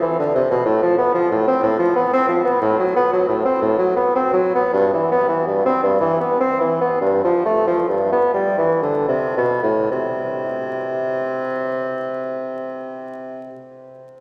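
Serene yet gently dance-like, this baroque-style classical fantasia for unaccompanied bassoon moves in a rubato 12/8 at 36-62 BPM, counted in dotted quarters, and it slows down from 2.0 to 9.9 seconds before shifting into a new section. The solo bassoon sits up front with a warm, roomy tone, ranging from G2 to C4 and playing until 13.5 seconds. A long cathedral reverb lends it a distant air, while vinyl crackle runs underneath this fragment of a longer piece.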